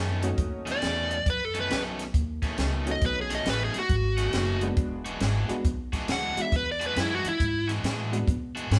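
Swaggering and soulful, this short electric blues shuffle struts along at 137 BPM in 4/4 with a 65% swing on the eighth notes, cut from a longer piece and sitting in B mixolydian as it moves from B9 to E9 around 4.8 seconds. An upright bass with a woody, pizzicato tone and a bright, overdriven semi-hollow guitar riff start together at the very beginning, joined at 0.2 seconds by a jangly, detuned honky-tonk upright piano and a compact cocktail drum kit with a high-tuned snare, punchy kick and hi-hat. At 0.7 seconds a dark, smooth lead guitar with overdrive steps up front to carry the melody, sitting above the rest of the band. The piano's vintage character adds a slightly out-of-tune sparkle to the accompaniment. The band sounds like it is playing live together in one room, with a moderate studio reverb giving the mix a sense of space.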